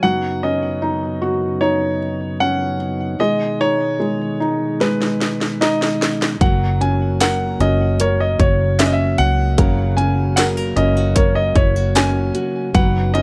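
Emotional and hopeful, this 76 BPM pop ballad excerpt opens with a clear, polished baby grand piano carrying the melody over a felt-muted upright piano with audible action noise and a flute-like tonewheel organ turning through a slow rotary speaker, until a punchy house drum kit enters with a fill at 4.8 seconds and a round, foam-muted electric bass and fingerpicked nylon-string guitar join at 6.4 seconds, with a jingly tambourine in the background and chords moving from Badd9/F# through G#m to F# in a small room.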